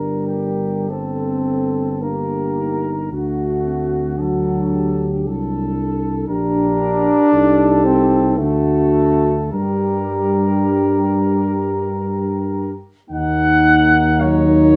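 A distant, roomy cornet with vibrato carries the melody of this elegiac, yearning hymn-like brass band piece in G minor, moving in a slow, rubato 3/4 at 46-58 BPM. A tight French horn section with light vibrato plays a smooth second line, while a mellow trombone and a dark euphonium in the background fill in the accompaniment, and an up-front tuba anchors the bass. The harmony moves from Gm through D and D7/C back to Gm before turning to Ebm at 13.1 seconds, and a moderate stone room reverb lends the whole fragment a solemn resonance.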